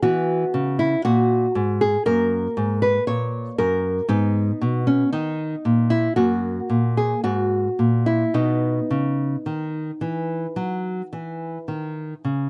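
Dance-like and radiant, this baroque-style classical excerpt features a solo fingerpicked nylon-string guitar, small-sounding and up front, moving at a rubato pace through E, F#, G#m and F# before settling on B, captured in a dry, close 1970s-style studio sound with light reverb.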